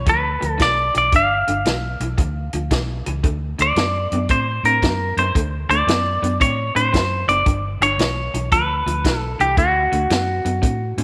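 An electric blues shuffle with a rollicking, soulful swing, cut from a longer piece, moving between G7 and D7. A clean, compressed semi-hollow guitar carries the melody up front with a glow of spring reverb, while a second electric guitar through a small old amp picks a bright, twangy, slightly broken-up riff bathed in lush chorus. A dark, round, foam-muted fingered bass and a punchy acoustic vintage kit, natural and rolled-off on top, drive the groove in a small-room setting with light studio ambience.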